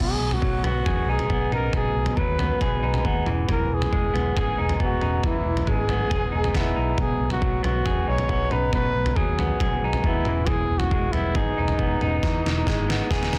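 A breathy, whispered trumpet carries a wistful melody with vibrato and scooped notes, its dark tone trailed by tape echo, while a slightly broken-up, lo-fi electric guitar through a small old amp plays a jangly riff over a growly, punchy picked bass. Just after, at 0.3 seconds, a gritty, pitched-down trip hop sampler-style drum kit enters up front with a thumpy kick and toms, closing this indie rock excerpt with a drum fill from 12.2 seconds. The chords move between B6 and Emaj7 in light reverb, under a dense, heavily limited modern master.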